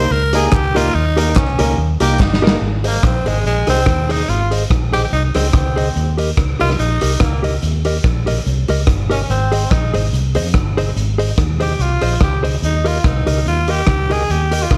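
An upbeat, cheerful ska cut with a gentle swing, led by a raspy, gritty tenor saxophone soloing up front with light vibrato and slapback echo. Beneath it, a mellow electric guitar with tremolo, a round, foam-muted fingered bass and a raw garage drum kit with a punchy kick keep things moving, while a clear, woody upright piano adds stabs and a hollow group handclap sits in the background during the opening seconds. A drum fill at 2.2 seconds leads into the longer stretch of the solo, all set in light reverb.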